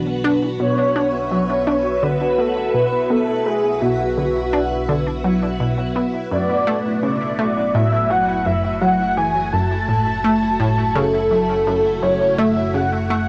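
Hypnotic and mysterious, this excerpt of ambient, sequencer-driven space music opens on a round, detuned analog pluck riff sitting up front, a lush string machine ensemble holding sustained chords through phaser and ensemble chorus, and a fat, wave-folded analog bass underneath, all moving from Bm7 to F#m. At 0.6 s a breathy, flute-like synth lead enters with vibrato and a gritty 12-bit sampler edge, echoed on tape, while a pulsing, tempo-synced gated texture shimmers in the background. The whole piece carries the hazy, dulled top end of a home cassette recording in a small, damp booth.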